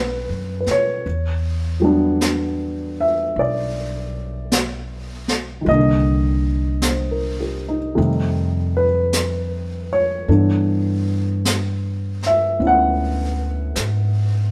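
A wistful, smoky jazz ballad excerpt at 52 BPM with a gentle swing, where a dark, mellow baby grand piano with audible action noise comps through chords from B7 and Em9 to Cm7, F9 and G6 over woody pizzicato upright bass, joined at 0.7 seconds by a brushed drum kit with a high-tuned snare and a distant, roomy sound, all played live together in one room with light reverb.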